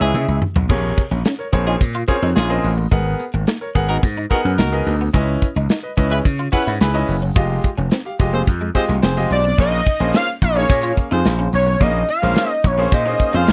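A fat, detuned sawtooth lead with chorus and slapback echo carries the melody up front, heard briefly at the start and returning at 9.3 seconds, in this late-night early-eighties boogie funk piece at 108 BPM in Bb minor, where a gritty, overdriven slap bass and a modern studio drum kit that opens with a quick fill drive the groove, a brilliant concert grand piano accompanies, a clear horn section with light vibrato plays a second line, and a hollow-bodied electric guitar riff with ensemble chorus sits in the background, captured in a dry, close 1970s-style studio recording.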